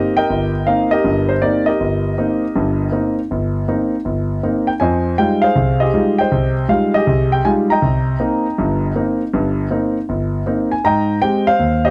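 Solo jazz in C minor, moody and cool at a swinging 159 BPM, a concert grand piano plays alone across nearly 12 seconds cut from a longer piece, moving through Cm7, Fm9 and Abmaj7 from deep bass up to Bb5, its intimate, natural tone sitting up front with audible action noise under close, detailed microphones and light reverb.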